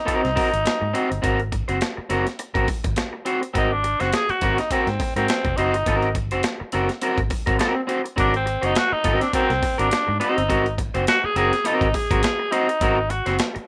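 Gritty and energetic, this funk fragment moves at 104 BPM with a light 16th-note swing, resting on a single Ab9 chord in Ab mixolydian. A raspy, vintage-toned tenor saxophone solos up front from the start, over a twangy, slightly broken-up picked electric guitar with vibrato, a compressed sampler-style breakbeat kit with a thumpy kick and medium-tuned snare, and a dark, round, foam-muted fingered bass. The rough home-demo mix carries a small-room ambience, and the passage is cut from a longer piece.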